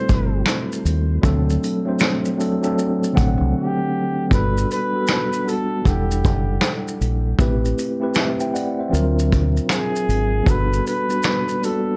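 Swung sixteenths in 4/4 give this cosy, mellow lo-fi hip hop piece its easy lope, carried by a vintage brush drum kit of snare, tight kick, hi-hat, shaker and finger snaps with a rolled-off top, and a deep, dark, round fingered electric bass up front. A clean tine electric piano, heard through its built-in speakers and softened with a cassette-tape tone and a low-pass filter, comps through Am7 and D7, then Gmaj9, Em11, Am9 and D7alt after a brief break at 3.5 s. Above it, a breathy, distant jazz flugelhorn solo drifts along with soft attacks, scooped notes and light vibrato, filtered and trailed by tape echo and plate reverb.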